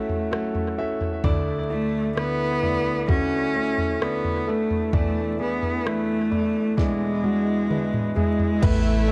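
A slow, straight 4/4 pulse at 65 BPM from a produced R&B drum kit with a soft kick and fat snare carries this hopeful, emotional pop ballad fragment. An intense, vibrato-rich solo cello sings the melody over an intimate grand piano with audible action noise and a full-bodied fingerpicked jumbo acoustic guitar in the background, with cello and piano both trailing tape echo and the drums playing a fill from 6.8 s. At 8.6 s a deep sine sub bass, a lush bowed violin section and an evolving, detuned sawtooth pad with chorus arrive just before the drums stop at 8.8 s, all within an echo-heavy small-room mix with light reverb and vinyl crackle, moving from F#m7/A through Dsus2 and E7sus4 to E7.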